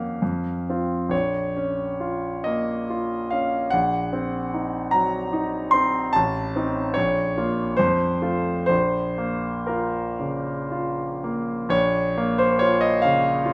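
A clear concert grand piano sits up front in light reverb, its deep bass and long sustain ringing through this brief passage cut from a longer piece. It is a melancholic, mournful romantic nocturne for solo piano in B-flat minor and 3/4, moving with rubato between 57 and 75 BPM and ranging from A1 to C6. A high F5 sounds at 0.2 seconds, and the harmony passes from Bbm through Cm7b5/Bb and Adim, then settles on Bbm, F and back to Bbm by 8.7 seconds.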